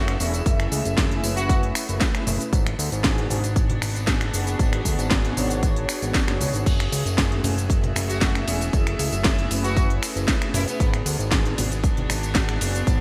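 Nu-disco at 116 BPM in F# minor, groovy and sleek, this excerpt sets a fat, saturated analog bass and a punchy, up-front electronic kick under a house kit of cracking snare, crisp hats, cabasa, finger snaps and cymbals in gated reverb, with bright tambourine and congas in the background, mellow chorused synth brass with delay, and a reedy gut-string chamber section holding sustained chords over F#m9 and G#m7b5, the bass, brass and strings pumping to the sidechain. After a brief phrase near 1.4 seconds, a focused studio violin section carries the melody from 8.1 to 10.9 seconds in a bright 1980s-style digital production.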